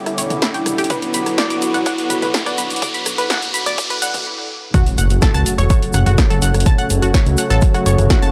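Melodic techno with a driving, dramatic mood, heard in an excerpt cut from a longer piece and split into a build-up and a drop. The opening seconds build over Em7 and Bm chords, with a lush, detuned unison pad and a warbly, nostalgic tape-like pad sustaining beneath a filter sweep and a rising sound effect, while a round, bright analog pluck spins arpeggios through chorus and tape echo. A punchy analog drum machine with hi-hat, rim click, snare and toms sits alongside a grainy tube shaker in the background and a fat, thick analog bass that is mixed up front. A brief stop between 4.3 and 4.7 seconds gives way to the drop on F#m, marked by an electronic impact. The layered, punchy electronic kick from a large room, present since the opening seconds, drives forward as the pads, pluck and bass pump against it. The whole has a dry, gritty hardware character with light reverb.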